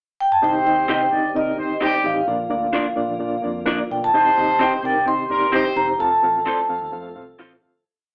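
Soul at 129 BPM in 4/4, this short, uplifting and danceable piece opens on a brief pickup before settling into a pre-chorus that moves through Cm, Bb, Cm and F. Up front, a vibraphone struck with soft mallets carries an airy, ringing melody built from hook phrases, shimmering with a slow motor vibrato, while a distant, roomy horn section plays short riffs in octave doubling as a second line. A reedy electric piano with fast tremolo keeps an eighth-note chord rhythm, and a tonewheel organ through a fast rotary speaker holds a sustained pad in the background, complete with key click. Entering at 0.9 seconds, an electric guitar through a small old amp adds slightly broken-up, compressed chops on the backbeat, while a foam-muted picked bass, present since 0.4 seconds, lays down a round, syncopated line with chromatic approach notes. The band sounds as if playing live in one room, with moderate reverb and an AM radio sound, and the whole piece fades out from 6.0 seconds to the end.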